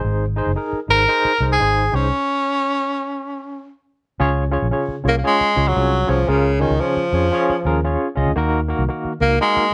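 Lightly reverberant with a mellow top end, this uplifting, joyful stretch of uptempo 1960s-style soul swings at 115 BPM in Db major, pairing a barky, overdriven tine electric piano with medium tremolo and a round, foam-muted fingered electric bass under a breathy, whispered tenor saxophone melody with slapback echo that enters at 0.9 s, and the band halts for a stop from 2.1 to 4.2 s before the groove resumes.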